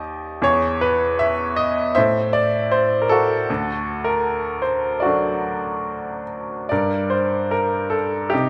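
A bright grand piano opens this brief, dark and reflective classical fragment, playing a lyrical solo line with rubato at roughly 70-79 BPM in 4/4, spanning D2 to E5. The instrument sits up front and intimate, its brilliant tone carrying long sustain and audible action noise, set in a moderate recital hall reverb. The harmony moves from E at 0.4 seconds through Am and D to Gm at 6.7 seconds before the cut at 8.5 seconds.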